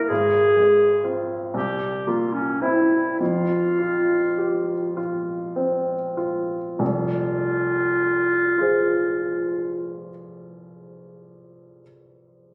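Romantic classical duo in F minor and 6/8, solemn and yearning, moving with rubato at a slow 32-44 BPM in dotted quarters and tuned to A4 = 437 Hz, where a soft-attacked, distant-sounding clarinet sings the melody up front while a clear, polished baby grand with short sustain accompanies through Fm/Ab, C7 and F5 harmonies as the opening phrase slows before settling on Fm at 6.8 seconds, the clarinet falling silent at 10.1 seconds and the piano carrying on to 12.5 seconds, all caught on a phone in a recital hall with a wet 1.3-second reverb, studio ambience and compression in this fragment cut from a longer piece.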